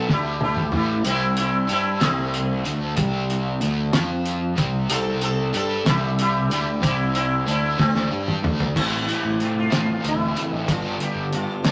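A muffled, lo-fi sound with a moderate studio reverb and a rolled-off top frames this dark, trippy psychedelic rock excerpt in 6/8. A buzzing, shimmering sitar takes a solo until 8.8 s, over a crunchy, double-tracked overdriven guitar riff pulsing with harmonic tremolo and a round, punchy fuzz bass. The thuddy, cloth-damped drum kit sits up front with a fat snare and dark cymbals, playing fills at 0.1 s and 7.8 s before the music settles onto Am and then G.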